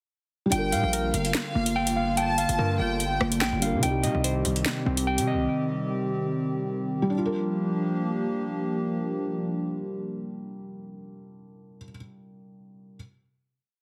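A half-time drill beat at 145 BPM drives this menacing, cold G minor hip hop piece, with metallic skipping hats, fast hi-hat rolls, a sharp snare and rim clicks over a saturated, sliding 808-style bass, while a felt-muted upright piano holds spread chords through 13.0 seconds, a mellow electric guitar loops falling arpeggios with tape echo, a reedy chamber violin section adds a brief counter-melody, and a hollow, flute-like pad with chorus sustains Gm7 and Cm into a final chord at 7.1 seconds, all under a heavily compressed radio sound.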